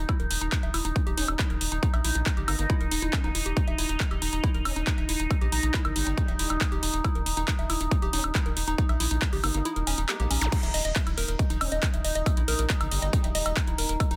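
Psychedelic and intense, this psychedelic trance passage pairs an evolving, resonant drone with a woody, wave-folded pluck riff, both pumping under a punchy, up-front kick, joined by a metallic-hatted dance kit with handclaps, woodblock and crash, a round, deep analog bass and a wobbling formant-sweep bass in the background, until the kick drops out at 9.7 seconds, a brief electronic zap sounds at 10.4 seconds, and the drop hits at 10.5 seconds in a dense, heavily limited mix.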